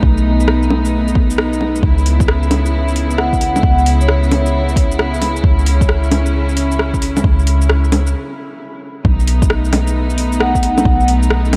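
A swung 133 BPM future garage groove in C# minor is driven by an overdriven, deep electronic kick and a layered deep house kit of bongos, metallic hi-hats, rim clicks and shaker, while a soft, round 808-style bass sits up front, both it and the earthy, lightly vibrato-laden string section pumping against the sidechain as the chords move from B to C#m7 and, after a break at 8.1 s, to B7. The mood is nocturnal and melancholic, with a vintage, band-limited vibraphone ringing with delay in the background in brief phrases at 3.2 s and 10.4 s. The whole excerpt is dreamy and soaked in moderate cathedral reverb with a cassette tape character, cut from a longer piece.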